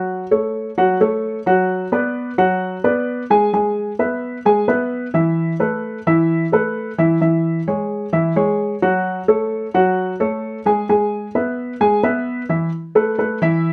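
A dark, mellow baby grand piano plays alone from the first moment, sounding intimate and up front, with audible action noise and a short, natural sustain under light reverb. This sunny, danceable Latin passage moves at 130 BPM in a straight 4/4 in A major, cycling through F#m, Bm, E and Asus2 before turning to C#m and back. A brief new section begins at 12.7 s on Asus2, and the clip ends at 13.7 s as a cut from a longer piece.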